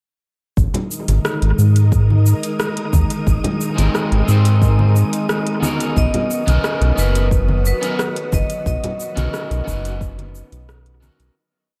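A round, up-front analog bass and an overdriven electronic kick open this relaxed, sunny sunset chillout piece at 0.6 s. Alongside them comes a light lounge beat of metallic closed hats, shaker and rim clicks on a deep house kit with analog delay, plus ringing congas in the background. A silky string machine soon settles in with sustained chords carrying vintage 12-bit grit and ensemble chorus, while an airy, breathy noise texture holds a high note in the background. At 3.8 s a slightly broken-up, twangy electric guitar adds rootless, syncopated chord stabs soaked in dub echo, as the bass keeps to its syncopated riff. A bright vibraphone struck with hard mallets enters at 6.0 s with motif-based phrases through tape echo, as the harmony shifts from Abmaj9 to Bmaj7. The mix is echo-heavy with light digital ambience, and a fade-out carries the groove to its close.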